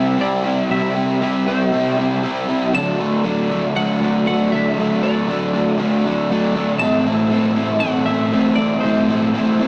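Hazy and wistful, this short rock excerpt moves at 118 BPM in a straight 4/4, shifting from C to D and then to A minor. An overdriven garage guitar, double-tracked and up front, drives a picked riff, while a bright, twangy twelve-string electric guitar carries a clean, compressed melody in the background. The rough rehearsal-room sound, soaked in wet studio reverb, has a dull top that adds to the haze.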